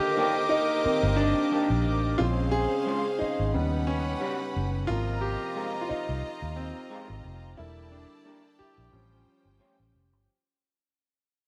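Silky and cinematic, this short soul cut at 89 BPM with a light sixteenth-note swing features a clear, natural grand piano soloing up front over lush bowed violins playing a second line, earthy sustained string chords, a twangy, slightly broken-up guitar riff with subtle chorus, and a dark, foam-muted fingered bass entering at 0.9 seconds, all moving through rich chords like Cm9, Eb7alt and Ab69 in light studio reverb as the whole passage fades out.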